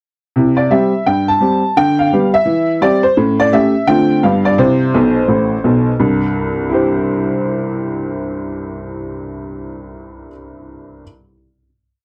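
A dark production places a lone upright piano up front in a moderate studio room, its tone woody, worn and slightly detuned, with a boxy body and long sustain. This short, complete stride jazz piece is exuberant and playful, swinging in four with a stride bass under a single-line melody. The piano plays alone from 0.4 seconds, moving through a brisk turnaround of major, dominant and minor seventh chords before settling home. A quick piano fill arrives at 4.9 seconds, leading into a final chord at 6.0 seconds that rings out on the instrument's lingering sustain.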